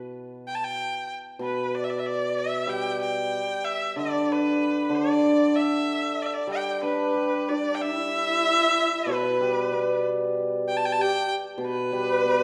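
A shimmering hammered dulcimer opens this graceful, pastoral Chinese traditional chamber piece at 94 BPM in a loose rubato 2/4, joined at 0.5 seconds by a single bowed erhu carrying a clear, smooth melody with vibrato and portamento, before a mellow, bamboo-toned xiao enters at 6.8 seconds with an expressive, tongued second line, all set in the lingering reverb of a scoring stage.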